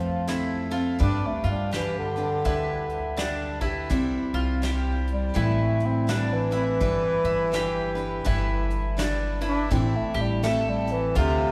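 A gently swung 4/4 feel at 83 BPM carries this pastoral, peaceful acoustic folk piece, where a clear, up-front bass clarinet sings a classical-style solo melody over bright, full-bodied picked steel-string guitar, woody double-string mandolin arpeggios, dark, thumpy pizzicato upright bass on gut strings, and a soft brush kit with a punchy kick entering at 0.3 s, the group set in a wet church reverb as the chords move from F and G through C, Amadd9 and G6 to Am.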